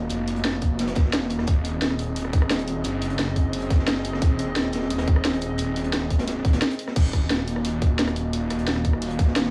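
A detuned saw bass sits up front in this dark, mechanical excerpt of technical drum and bass at 175 BPM in Eb dorian, its thick, lush unison tone given chorus and tube saturation as it holds low sustained notes. Around it, a deep, moody analog pad built from detuned, wave-folded oscillators with a sub octave sustains chords with a slow attack and long release, treated with chorus and sidechain pumping. The harmony moves from Ebm to Ab/Eb at 1.5 seconds and returns to Ebm at 7.0 seconds, after a brief break starting at 6.6 seconds. A layered drum and bass kit with a cracking snare, hi-hats, rim clicks and crash cymbal enters at 0.1 seconds, joined at 0.6 seconds by a tight electronic kick, both up front with studio reverb. Further back, a crunchy breakbeat kit adds gritty, saturated hats and a medium-tuned snare with a rolled-off top, filtered and set in a studio room, while light reverb rounds out the mix.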